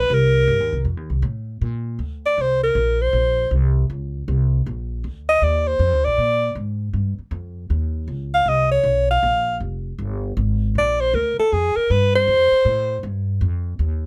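Dry sound frames this sophisticated, relaxed swing-and-bop excerpt, where a close-miked alto saxophone solos up front with a clear tone, light vibrato and scooped notes until 13.0 seconds over a woody pizzicato upright bass that carries on to 14.1 seconds.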